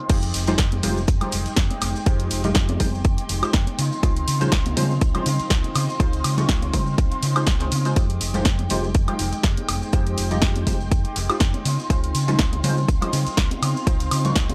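An up-front, punchy electronic kick drives this nostalgic, funky slice of filtered disco house, with a swung sixteenth-note feel and a dry, gritty hardware sound. It is joined by a tape-warm analog drum machine with a punchy snare, hi-hat, crash cymbal and woodblock, while bright maracas and congas sit distant in the background as if in a large room. A dark, round fingered electric bass carries transformer saturation. A sawtooth polysynth comp with a fast filter pluck adds chorus and phaser, and a clean, twangy electric guitar played through an envelope filter picks out a compressed riff. Behind them, a lush, mellow string machine holds slow-attack chords with ensemble chorus and a sub octave. The strings, guitar, synth, bass, hats, cymbals and percussion all pump against the kick and sit under a low-pass filter as the music moves between Fm9 and Dbmaj9.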